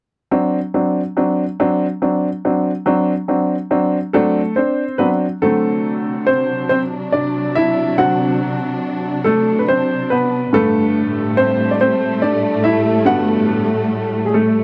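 A clear, woody upright piano, close and intimate with its action noise audible, opens this tender, romantic pop excerpt at 0.3 s, accompanying on a D7 chord in a slow 6/8 at 47 BPM per dotted quarter. From 5.4 s the piano takes a solo while a bowed studio string ensemble enters with sustained chords, expressive with vibrato, portamento and a smooth top, and the harmony moves to Gadd9 at 10.5 s. The sound is a dry, close 1970s-style studio recording in a modest booth ambience, with both parts up front.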